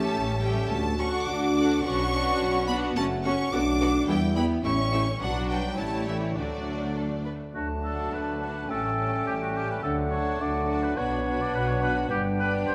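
A spirited, cheerful classical-period orchestral passage in 2/4 opens with a close, rich violin section singing the melody over a smooth second violin line, lush violas in the background, distant mellow French horn chords and a bowed vibrato bass of cellos and double basses, until an up-front oboe and a vintage-toned bassoon join at 7.5 seconds, followed at 7.6 seconds by a pure, crisp silver flute and a roomy clarinet, all set in a wet scoring-stage reverb.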